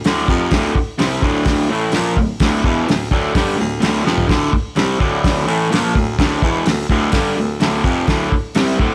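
A raspy baritone saxophone growls out a low bass line over a cloth-damped, thuddy drum kit with a fat snare and tight kick, joined almost at once by a raw, overdriven garage guitar riff, picked and double-tracked, that sits up front over a D minor chord. This menacing, swaggering garage rock cut rolls in a straight 4/4, with a drum fill at 4.1 seconds. The muffled, saturated drums and the bright guitar stay up front under a light reverb, giving the short fragment a lo-fi edge.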